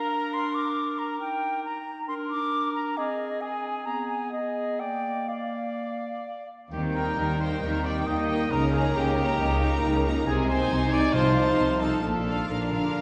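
A reverberant concert-hall sound, heard from further back in the room with a softened top end, frames this fast, dramatic romantic orchestral passage in Eb major, cut from a longer piece and moving at roughly 123-139 BPM in 4/4 with a flexible, rubato feel. The mood is graceful and lively from the outset, as a pure, expressive concert flute with soft attack and vibrato joins a distant, roomy clarinet and a cor anglais with light vibrato and a smooth top, the three woodwinds weaving secondary lines over a harmony that passes through a darkening Abm/Cb before settling on Bb. At 6.7 seconds the full orchestra arrives: a tight French horn section holds sustained chords in the background, a bright, present trumpet section adds stabs, a rich, even double bass section pairs with a focused cello section to carry the bass, and a violin section plays a supporting line. Just after, lush bowed violins take up a very quiet melody high in their range, while a close, very quiet viola section fills the accompaniment. 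Soft-mallet timpani give a brief round stroke at 11.1 seconds under an F7/C chord, leading the passage toward its closing Bb.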